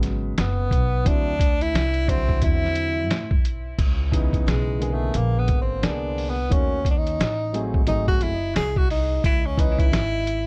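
Jazz-hop with a mellow, cool feel at 88 BPM in swung 4/4, built on a muffled, compressed lo-fi sampler-style drum kit with a thumpy kick and vintage 12-bit grit, a woody pizzicato upright bass, and a dark, smooth baby grand piano with long sustain and plate reverb accompanying a tenor saxophone with vibrato and subtone tone that enters at 0.4 s, launches into a jazz-style solo at 3.8 s with plate reverb and tape echo, and plays on after the piano stops at 9.8 s.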